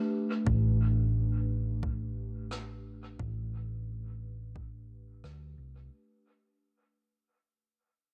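A dark, round hollow-body fingered electric bass sits up front from 0.5 seconds, moving between A1 and D2 beneath a warbling, detuned tape-like pad that holds a sustained A9sus4 chord with chorus and its own reverb. This brief ambient dub passage, cut from a longer piece, moves at 88 BPM in a straight 4/4, with a punchy, overdriven electronic kick and, from 2.5 seconds, a distant, rolled-off rim click trailing dub echo. The mood is meditative and hazy, set in a small, echo-heavy room as the passage fades out.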